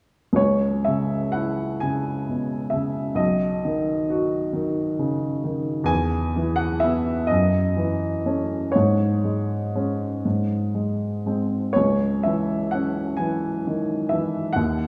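Mournful and melancholic, this short passage from a romantic classical nocturne drifts in a slow, rubato 6/8, played by a solo baby grand piano whose natural, up-front tone carries a short sustain. Moving through C# minor, B, E and F#m7 before settling on G# and returning to C# minor near 11.8 seconds, the piano spans from B1 up to G#5. A moderate concert hall reverb surrounds the instrument, lending a sense of space to its sound.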